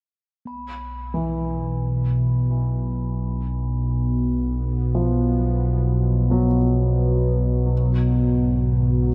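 Unfolding in free time, this dark ambient drone piece feels unsettling and ominous, suspended in a vast, echoing space. Up front sits a mellow analog drone in the low register, its evolving sawtooth, pulse and triangle tones shaded by pulse-width modulation, ring modulation and chorus, with a slow attack and long release. Behind it, a very quiet sweeping pad of bright, detuned sawtooth sustains chords with a filter swell and chorus. In the background, a bronze singing bowl struck with a felt mallet fades in from 0.5 s, ringing and metallic with slow beating. A warm concert grand piano with deep bass plays arpeggios through delay until 7.9 s, while the harmony rests on B5 before shifting to G#m at 7.7 s.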